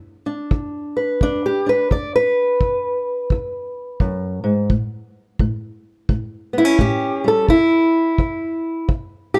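Swaggering and gritty, this short excerpt cut from a longer acoustic country blues piece moves at 86 BPM in 4/4 with a swung eighth-note feel. A fingerpicked old ladder-braced acoustic guitar carries the melody from the start, its old strings giving a woody, boxy tone that sits up front and spans from E2 to D5. A tight, smooth kick drum played with brushes joins at 0.5 seconds, sounding dark and close in a small room. The harmony rests on E7 before moving to A7 at 4.7 seconds, then drops away from chords at 7.5 seconds. Light reverb and a dark, warm production round out the sound.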